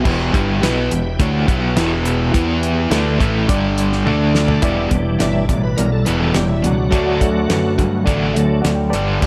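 A straight, driving 4/4 groove opens this short cut from a longer classic rock piece. A damped 70s kit sits up front with a fat snare, tight kick and dark cymbals across crash, hi-hat and toms, and a growling fingered bass adds bright, overdriven grit beneath. Two picked guitars carry the swaggering riff: one biting and overdriven, the other a hollow-bodied semi-hollow guitar treated with tremolo and sitting slightly louder. In the background, a shouting tonewheel organ holds sustained chords through chorus vibrato and a slow rotary speaker, while a reedy, worn and slightly out-of-tune electric piano plays clean accompaniment through its built-in speakers. The harmony moves from Em through G5 and D5, a drum fill at 4.1 seconds leads to the organ taking a solo from 4.6 seconds over Em7 and D, and the electric piano adds a fill at 8.1 seconds, all inside a light studio reverb.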